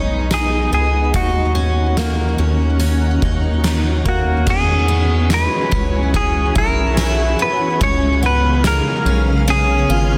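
Dream pop with a blissful, ethereal mood, this short cut from a longer piece sets a clean, hollow-body electric guitar melody with tape echo up front over a detuned, granular ambient pad soaked in chorus and its own reverb. A picked twelve-string acoustic guitar adds bright, octave-doubled arpeggios with subtle chorus, finger squeak and tape echo, while a round analog bass with a fast attack and filter sweep anchors the low end. An oversized, low-tuned acoustic drum kit with a fat snare, punchy kick and dark cymbals enters at 0.3 seconds, gritty and pumping in a stone room, as the chords move from B69 and D#m7 to E69 and C#7 within a dense, heavily limited modern master.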